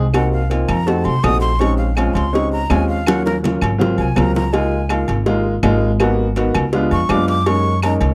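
Sunny and danceable, this short Afro-Cuban jazz passage in a straight 4/4 is cut from a longer piece. A warm baby grand piano sits up front with natural-sounding chords, joined by a thumpy, woody pizzicato upright bass on steel strings. Over them, a breathy metal jazz flute takes an expressive solo with vibrato and tongued notes, playing as a second line from 0.1 seconds. Ringing agogo bells and metal-shell timbales join the percussion, while round low-tuned cowbell and bongos and dry, woody claves sit toward the background, with a drum fill from 3.1 to 4.5 seconds. Rich harmony moves from Cm7b5 and F7b9 through Ebm9 and Ab13 to a resolution on Db6, then on toward Gb6. The sound is dry and close, with little reverb, in the manner of a 1970s studio recording.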